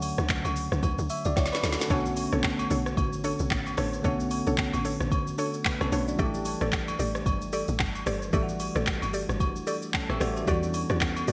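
Soulful and late-night, this amapiano excerpt moves in a swung 4/4, with a bell-like tine electric piano, bright and treated with phaser, laying down chords from Dmaj7 through Bm9, A7sus4 and Em9 over a tight, punchy log drum bass. A smooth R&B drum kit sits up front with a soft kick, woody snare, smooth hats and handclaps under gated reverb, joined by agogo bells and woodblock, and after a brief drum fill a round, mellow synth pluck enters at 1.9 seconds with chorus and digital delay. The bright 1980s-style digital production wraps it all in a lush hall reverb.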